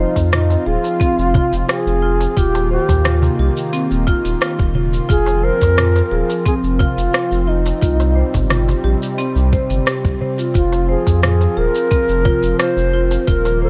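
A steady, straight 4/4 groove at 88 BPM, built on a soft, tape-toned electronic kick and an organic electronic kit of crisp hi-hats, rim clicks, shaker and toms, with a dry clay darbuka in the background, carries this earthy organic downtempo excerpt in F minor, where a deep, up-front analog bass with tube saturation and sidechain pumping anchors the harmony, a detuned sawtooth pad with chorus and pumping holds sustained chords, a mellow soft-mallet marimba spins delayed arpeggios, and a reedy, close-miked bass bansuri with vibrato and digital delay sings the melody over a Fm7, Eb6, F5, Cm, Fm progression in a dry, intimate space.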